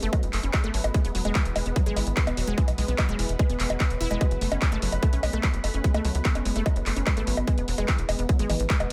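A straight 4/4 pulse is set by an overdriven electronic kick that sits up front, joined by a layered techno kit of bongos, handclaps and warm hi-hats that carry the air of a large room. Beneath it, a tight sequencer bass built from sawtooth and square waves drives the track, its filter pluck and moving notch giving each decaying note a punchy edge. A lush, detuned unison pluck plays the riff with a noise layer for body, pumped by sidechain and trailed by dub echo. Behind them, a dark, morphing wavetable pad holds slow-attack chords that move between F#5 and E5, warbling with a vintage character through phaser, built-in reverb and its own sidechain pumping. A barely audible riser creeps in at 7.5 s near the end of this short excerpt, rounding off a psychedelic, alien mood in an otherwise dry mix.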